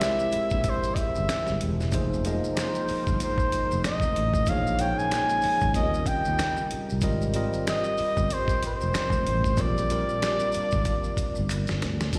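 Sensual and relaxed, this swung neo-soul R&B excerpt, heard as a live gig through the venue's PA in a recital-hall reverb, features an up-front, warm flugelhorn melody with light vibrato and slapback and tape echo over bell-like tine electric piano chords, a lush, detuned unison pad with chorus and phaser in the background, a gritty, compressed sampler-style drum kit with a thumpy kick that plays a fill at 11.5 seconds, band-limited finger snaps and maracas with slapback echo, and a growly fretless electric bass with analog chorus that enters at 0.4 seconds.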